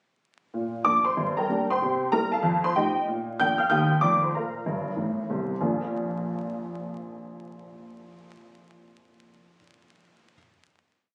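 A brisk swung 4/4 at 190 BPM drives this playful, exuberant stride-jazz piece in Bb major, played start to finish by a lone honky-tonk upright piano with a detuned, jangly, woody voice and short sustain. Stride bass sits beneath a tune in filled octaves across a range from G1 to G6, with a quick fill at 4.7 seconds before the piece lands on a final Bb chord at 5.6 seconds. The piano sits up front in moderate studio ambience with club reverb, heard as if captured on a phone in the room, with vinyl crackle and compression giving it a vintage feel.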